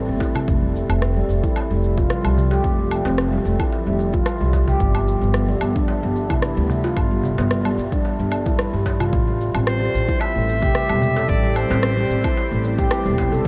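A ringing handpan of nitrided steel, played with the fingertips and placed up front in a boxy small room, carries this hypnotic, meditative piece of organic downtempo, its arpeggios passing through a low-pass filter sweep and a tape echo. Beneath it a woody, thumpy upright bass with gut strings plays pizzicato, dark and close, and pumps against an electronic kick that is punchy, layered and re-recorded in a small room. At 111 BPM in 4/4 with a light swing on the sixteenths, the groove also takes in electronic cabasa, woodblock and rim click, along with a soft-handed clay darbuka that sits small, high and vintage in the background. A warbling, nostalgic pad with a slow attack and long release holds detuned, lo-fi chords over Fmaj9, G13 and Am7 in A minor, treated with chorus and pumping. At 9.7 s a clear, classical-style clarinet joins the ensemble on melody with delay, floating over a dreamy mix soaked in a huge ambient reverb. 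This is a short section cut from a longer piece.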